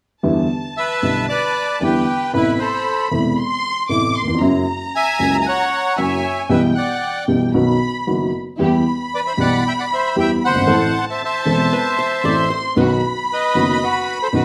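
Melancholic and passionate, this rubato tango excerpt in E minor at 115 BPM puts a bright, reedy bandoneon melody up front from 0.8 seconds over an intimate upright piano whose action noise is audible, while a distant, woody violin section with vibrato sings a second line, a very quiet gut-string chamber ensemble adds period-style stabs from 8.6 seconds, and a clean hollow-body archtop guitar offers a brief second line at 11.7 seconds, all set in a wet studio reverb with a dark production.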